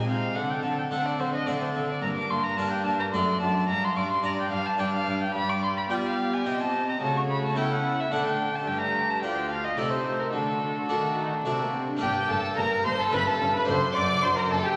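Dramatic and stormy, this excerpt from a baroque-style concerto movement in G minor moves at 108 BPM in a straight 3/4, tuned to A4 = 436 Hz. A solo violin with a nasal, distant gut-string tone carries the melody up front, joined by a violin section in period style that also plays the melody while a second violin section plays a lower line. Underneath, a reedy viola section and a rich cello section bowed with light vibrato fill in accompaniment and bass, while a close-miked, dry Flemish-style harpsichord with two sets of strings plucks its part prominently against the bowed ensemble. The harmony drives through Gm, D7/F#, G7, Cm and A/C# toward an Adim/C and a D chord before a new section opens at 12.0 seconds, where a dark double bass section joins the low end. The whole performance sits in a wet concert hall with a 1.9-second reverb, overlaid with a layer of vinyl crackle.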